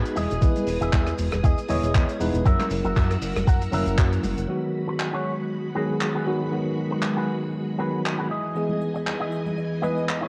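A worn, slightly out-of-tune tine electric piano, a lush vintage string machine with ensemble chorus and a dark, clean envelope-filtered electric guitar riff open this cosmic, sleek nu-disco excerpt in G# minor at 118 BPM with a 16th-note swing, moving from Emaj7 and F#7 to G#m7, while a glossy, nasal chorused synth bass and a thumpy, up-front electronic kick drive the opening section beneath a dry, tight funk kit of handclaps, hi-hat, rim click and shaker, bright cabasa and congas sit in the background, and the sidechain pumping, moderate spring reverb and cassette-tape character of a home recording give it a hazy, retro sheen.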